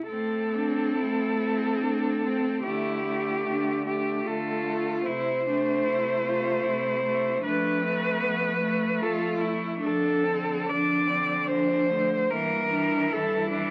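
In a rubato 3/4 pulse drifting between 62 and 77 BPM, this solemn, elegiac classical excerpt for cello ensemble moves from A minor toward D minor around 9.8 seconds, with an intense, up-front bowed cello singing the melody over a focused, close second-line cello, a clear accompanying cello entering at 0.5 seconds, and a smooth, distant bass cello, all set in moderate studio reverb and heard through the crackle of a very old 78 rpm record.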